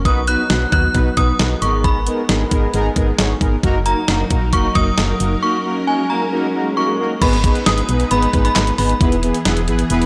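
Synth-pop cut from a longer piece, driving and cool in mood, moving at 134 BPM in 4/4 with a straight feel in G# minor. A clean 12-bit digital drum machine sits up front with a thumpy kick, a medium-tuned snare, handclaps, hi-hat and crash, its sampler-style hits carrying the air of a small room. Beneath it, a solid FM bass gives punchy, round, dark notes with a fast attack, while bold, nasal analog synth brass with chorus and vibrato fills the middle with a fat sawtooth accompaniment and a filter sweep. A vintage string machine voiced as violas holds soft sustained chords in the background through phaser and ensemble chorus, and a chiming, inharmonic FM synth carries the melody high above, its ringing, warbling tone stretched by analog delay until it drops out at 9.2 seconds. An electronic swell enters faintly in the background at 6.1 seconds, leading into a new section at 7.2 seconds where the harmony lands on G#m before shifting to E, all under light reverb and transformer saturation.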